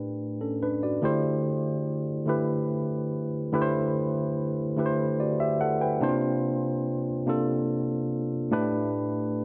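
R&B in a sensual, tender mood, this short excerpt moves at a slow 48 beats per minute in 6/8 with a straight feel, tuned slightly sharp to A4 = 445 Hz. A tine electric piano plays alone for the full 9.4 seconds, spanning A2 to G5 and sitting up front in the mix. Its tone is worn and slightly out of tune yet clean, with the character of an instrument heard through its built-in speakers. The harmony drifts through suspended ninth chords, opening on A9sus4, shifting to D9sus4 at 1.0 seconds, moving to C9sus4 at 6.0 seconds, and settling back on A9sus4 near the close. Light reverb and a digital ambience give the intimate performance a soft halo, and the clip is cut from a longer piece.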